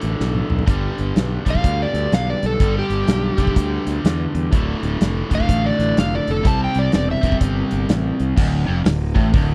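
Dry and close, with little reverb, this 1970s-style studio recording puts every instrument up front in a gritty, heavy short cut from a longer blues rock and southern rock piece. At 125 BPM in 4/4 with a swung eighth-note feel, a big acoustic drum kit drives the groove with a punchy kick, a medium-tuned snare, hi-hat, crash cymbal and toms, opening with a quick fill at 0.2 seconds. A biting, bright, double-tracked overdriven guitar picks the riff in the low and middle register, while a round fuzz bass, fingered and overdriven, sits underneath. From 1.5 to 7.4 seconds an overdriven slide guitar with a dark tone and slapback echo plays the melody in a higher range above them. The harmony moves from D5 to G, then to Dm and C, settling back on Dm as a brief new section begins at 8.4 seconds.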